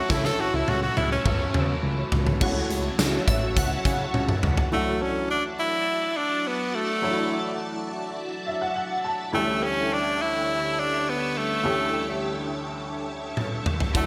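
Bright, glossy 1980s-style digital production in a lush hall frames this romantic pop passage: an up-front tenor saxophone with vibrato and delay carries the melody over polished baby grand piano, a phased vintage string machine and a fat sawtooth analog bass, while a huge arena drum kit with gated reverb and a very quiet, biting overdriven guitar mark the opening, bass and drums fall away near 4.7 seconds, a shimmering FM bell adds a dreamy second line from 2.4 seconds, and the piano takes a fill at 8.2 seconds.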